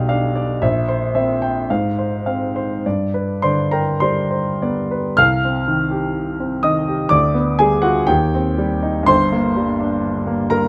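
A romantic classical character piece for solo piano, this short excerpt cut from a longer work has a bittersweet, stormy mood and a flexible rubato feel in 2/4. The warm grand piano sounds smooth and vintage, sitting up front with close, detailed miking and little reverb. It spans from G1 to F6, with a new section arriving at 5.2 seconds and harmonies moving between dominant-seventh chords and minor chords.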